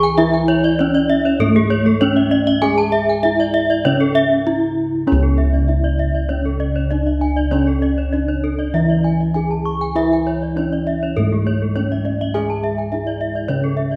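A straight 4/4 pulse drives this hypnotic, shimmering Balinese gamelan passage, cut from a longer piece and set in a moderate scoring-stage reverb. A ringing bronze metallophone played with a wooden mallet carries the melody, its paired tuning producing shimmering beats under a slapback echo, while a lower metallophone plays accompaniment in the background and round, bright bossed gongs sit up front on the bass. Above them, two horn-mallet metallophones weave arpeggios throughout, the higher one close-miked, dry and full.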